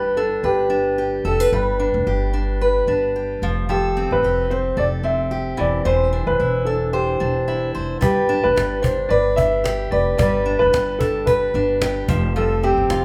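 Lightly reverberant and captured as a band playing live in one room, this sunny, carefree acoustic pop passage, cut from a longer piece with a gently swung sixteenth-note feel, sets a woody upright piano melody over an up-front fingerpicked steel-string acoustic guitar and thumpy pizzicato upright bass, cycling through G, Fadd9 and Cadd9/E before a cajon with faint snares joins at 8.0 s.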